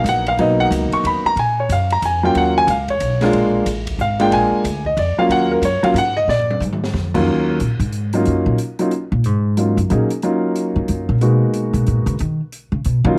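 An intimate concert grand piano with audible action noise and deep bass takes the opening solo in this cool, late-night jazz trio piece in Eb minor at 183 BPM in a swung 3/4. It moves from a rootless Abm7 through Ebm7 and Bb7 over a woody, thumpy pizzicato upright bass and a softer drum kit with dark cymbals, a high-tuned snare and a boomy kick. A drum fill arrives at 6.3 seconds before the bass steps up front for its own solo from 7.3 seconds, all in a light studio reverb with a faint mains hum.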